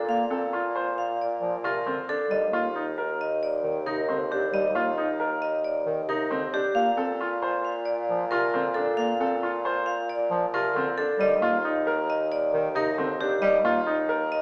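Moving in a straight 5/4 at 135 BPM, this meditative, hypnotic fragment of minimalist classical pattern music in Bb major rocks between Bbmaj7 and Ebmaj7sus2. A ringing, metallic vibraphone struck with hard mallets carries the melody over brilliant, up-front baby grand piano arpeggios, while a warm, lightly vibrato-tinged bassoon anchors the bass. A distant, roomy bass clarinet adds accompaniment from 0.1 to 13.8 seconds. The ensemble sits in a wet recital-hall reverb with a small-speaker character.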